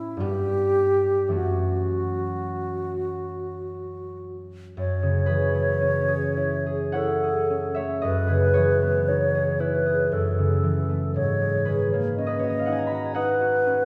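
A wet concert hall reverb with a long decay surrounds this recording, and the listening position sits further back in the room. It is a mysterious, wistful impressionist classical duo in a flowing three-beat metre with a free, rubato feel, cut from a longer piece. The bright wooden-headed alto flute carries the melody from start to finish, close-miked and up front, with an airy, straight tone, tongued notes and expressive phrasing. The acoustic concert harp accompanies throughout, also up front, its fingerpicked notes ringing with a warm resonance across a deep-to-high span. The harmony drifts through rich minor colours, moving from F#m7 at 1.3 seconds into F#m11 at 4.8 seconds, then C#m9/F# and back to F#m11 before settling on G#m11 at 11.2 seconds.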